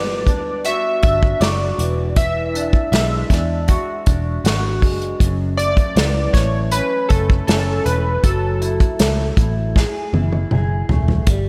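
Up-front unplugged acoustic drums played with bundle sticks, with a tight kick and medium-tuned snare, anchor this hazy, wistful indie and bedroom pop excerpt at 79 BPM in F# minor, beneath glossy, airy chorused retro synth keys carrying the melody until 9.7 s, a twangy, slightly broken-up electric guitar through a small old amp with lush chorus and warbly pitch drift, and a dark, round, foam-muted picked bass, set in a dreamy, reverb-soaked mix over Gmaj7, E9, F#m7 and F#m9 chords before a drum fill from 9.8 s.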